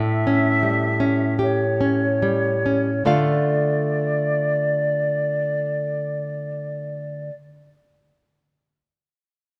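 A yearning, elegiac romantic duo fragment in free rubato, where a pure, vibrato-laden concert flute sings its melody over full-bodied fingerpicked nylon-string guitar, slowing through the opening 3.1 seconds as an A7 chord resolves to D minor, all set in a moderate scoring-stage reverb.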